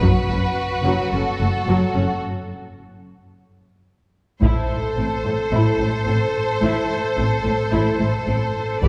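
Heavy-stick taiko hits, close and dry, punch through this dark, heroic cinematic orchestral fragment at 0.0, 4.4 and 8.8 seconds, over bowed string sections that play throughout. A clear, focused violin section carries the melody with vibrato while a smooth, up-front second violin line sits beneath it, woody violas fill the middle, and a distant cello section and rich, even double basses anchor the low end. The whole ensemble blooms in a reverberant concert hall, and a brief break comes before the harmony shifts into its second section.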